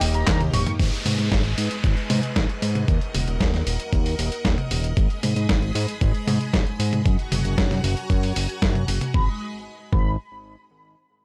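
A nostalgic, danceable italo disco excerpt in G# minor at 115 BPM opens at once with a lush string machine holding sustained chords, a brief, brilliant grand piano stab set in the background with tape echo, a fat, nasal analog bass up front, and a dusty soul sampler-style kit of handclaps, hi-hat, medium-tuned snare and toms, overdriven and compressed. An electronic kick with a thumpy, gritty punch joins at 0.3 s, and a short drum fill follows before the groove settles in. Mellow synth brass, round and detuned with chorus and tape echo, sounds briefly at the start and returns near the end as the melody. An electronic downlifter runs beneath the opening bars as the chords move through G#m, D#m and F#add9 in a straight 4/4. The vintage strings fall away at 9.4 s, leaving the saturated bass, kick and brass to carry a dry, raw hardware sound with little reverb into the final G# minor passage.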